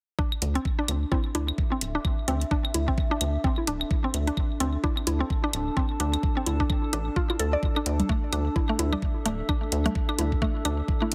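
Minimal techno with a quirky, clinical mood, this short cut from a longer piece rides a swung sixteenth-note feel in 4/4. A knocking electronic kick sits up front from 0.2 seconds, joined by metallic layered hi-hats and analog, tape-tinged claves and congas that carry a delay. A rubbery, hollow square bass bounces in the low end with a dark, nasal tone, pumping against the kick. The mallet-like synth pluck is the hook, a woody, round riff with FM and ring-modulated edges, gritty 12-bit sampler color, chorus, delay and sidechain pumping. Behind it, a warbling, nostalgic lo-fi pad drifts in at 0.5 seconds with slow attack, chorus and its own reverb. The overall sound is dry and heavily compressed, with a radio-like squeeze.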